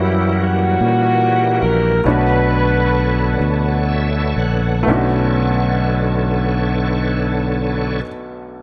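A small-room ambience with light reverb frames this brief, fervent slice of slow gospel in B minor, cut from a longer piece and moving in a straight 6/8 at roughly 38-50 BPM in dotted quarters, slowing down through the first 4.9 seconds. A punchy, tight horn section with light vibrato carries the melody up front, stopping at 3.9 seconds. Beneath it, a baby grand piano plays intimate, natural accompaniment with its action noise audible, continuing until 8.6 seconds. A shouting tonewheel organ, lightly overdriven with chorus vibrato and a fast rotary speaker, holds sustained chords and plays a fill from 3.4 to 4.9 seconds. A fingered electric bass, amped and direct, anchors the low end up front. The harmony moves from F#7b9 to Bm9 at 2.0 seconds, and the passage shifts into a second section at 4.9 seconds, giving the whole a soulful, churchy ache.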